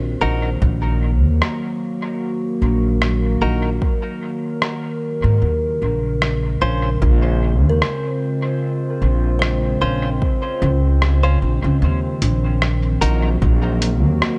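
A warbling, detuned pad sits up front, holding sustained chords with a slow attack and long release, its chorus and built-in reverb giving a nostalgic, lo-fi haze to this deep, meditative ambient dub piece at 75 BPM in Eb dorian. Beneath it, a woody, thumpy pizzicato upright bass on gut strings carries the low end, while an electronic kick drum, re-recorded in a large room, adds a tape-warm weight from 0.6 seconds. A muffled, pitched-down sampler-style kit with hi-hat and rim click enters at 1.4 seconds, its compressed hits trailing into dub echo over a gentle sixteenth-note swing. Clean, direct-recorded electric guitar stabs and a hollow, ringing kalimba playing thumbnail-plucked arpeggios in the background both drift through dub echo. The harmony moves from Ebm to Dbmaj7 at 5.4 seconds and back to Ebm at 11.8 seconds in this excerpt from a longer piece, all within a dark, lightly reverberant mix.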